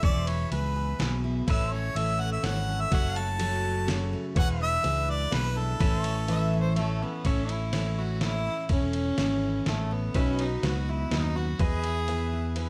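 A heartfelt, nostalgic honky-tonk country tune in three, cut from a longer piece, opens with a soft-attacked, scooped harmonica melody over bright picked acoustic guitar, clean background pedal steel chords, a dark, round fingered electric bass and a gritty, pitched-down sampler-style drum kit, with a jangly tack piano joining at 1.5 seconds and a clear, biting bowed fiddle entering at 6.3 seconds before taking a solo from 7.2 seconds, all set in light reverb.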